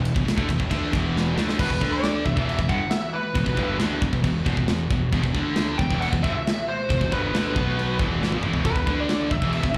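Aggressive and epic, this heavy metal excerpt opens with a tight, mid-forward drum kit up front and a growly, fuzz-drenched fingered bass under three bright, distorted rhythm guitars playing the riff, the high-gain and tight parts carrying slapback echo while a double-tracked fuzz guitar sits very quiet. A clear, focused string section holds sustained chords far beneath, and at 1.6 seconds a dark, smooth overdriven lead guitar enters with the melody, coloured by slapback echo and delay. Drum fills arrive just before the lead's entry and again near the end, and the whole thing sounds like a live gig heard through a club PA with a touch of room reverb.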